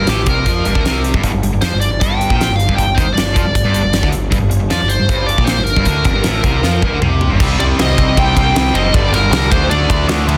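Hard rock in G minor at 156 BPM, aggressive and driving, cut from a longer piece: a double-tracked, cranked stack guitar riff and a growling, round, overdriven picked bass drive it from the start, while a huge arena drum kit sits up front with a punchy kick, fat snare and big-room sound. A smooth, bright lead guitar with slapback echo carries the melody over the top, and a drum fill from 6.6 to 7.4 seconds pushes into a new section where the harmony moves from G minor to C minor before closing on G5 and D5 power chords. The mix has light reverb and a dense, heavily limited modern master.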